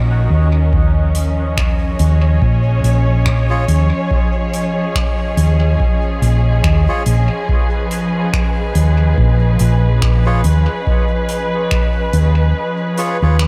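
A small-room recording of a meditative, deep ambient dub groove at 71 BPM in 4/4 with a swung sixteenth feel, drifting from Ebm7 to Db. Veiled, muted strings hold lush bowed chords under an up-front, round hollow-body electric bass with tube saturation, while a bubbling sawtooth texture with chorus and reverb sits in the background. An analog electronic kick enters at 0.7 s, joined at 1.1 s by a soft-mallet kit of finger snaps and hi-hat with dub echo, and a reedy, breathy melodica adds echoing stabs from 3.5 s in this excerpt from a longer piece.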